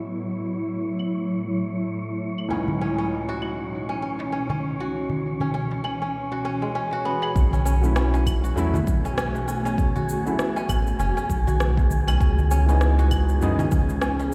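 Hypnotic and mystical, this organic downtempo excerpt moves at 99 BPM with a swung sixteenth feel, opening on a felt-muted upright piano with audible action noise, an ethereal detuned pad with ensemble chorus, and a breathy wind-like noise texture, joined at 1.0 seconds by filtered electronic claves, shaker and rim click. A ringing, fingerpicked kora with tape echo enters at 2.5 seconds over chords of B7sus4 and C#m9, followed closely by a crisp, hard-handed darbuka in the background. At 7.4 seconds a smooth, up-front synth bass with vibrato and a deep electronic kick arrive, the bass, piano and pad pumping under sidechain as a lush hall reverb and a big, bare-room ambience surround the mix.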